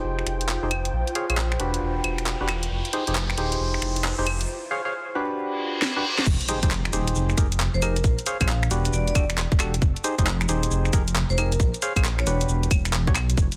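A dark, detuned sawtooth bass rumbles up front through this skippy, soulful two-step garage excerpt, its deep, beating tone saturated and pumping against the beat at 135 BPM in F dorian with a swung sixteenth-note feel. Over it, a hollow, organ-like stab with chorus and dub echo plays mellow, decaying stabs across almost the entire passage, while a smooth analog pad and a cloudy, granular pad with built-in reverb sit in the background, sidechain pumping, until 4.5 seconds. The garage kit, layered and overdriven with a cracking snare, carries hi-hat, shaker, claps, finger snaps, claves and crash through the build-up, as a riser and reverse cymbal lead into a drum fill. At the drop at 6.3 seconds, an impact lands and a tight, overdriven electronic kick joins up front. A ringing vibraphone struck with hard mallets then adds a bright, metallic melody with dub echo from 7.7 to 12.4 seconds. The dense, heavily limited master carries light digital ambience and a layer of vinyl crackle.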